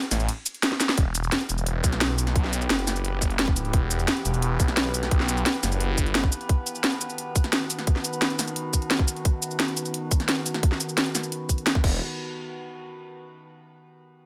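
Tense and dark, this short cut of technical drum and bass in E harmonic minor drives at 174 BPM, with a cracking, overdriven kit of bright hats, ride, crash and shaker joined at 1.0 seconds by a tight, up-front electronic kick, while a thick, swirling phased saw bass rumbles between E1 and B1 before dropping out at 6.3 seconds, and a metallic, eerie ring-modulated drone swept by a filter hovers beneath with chorus and a pumping pulse as the harmony moves from Em to B and back.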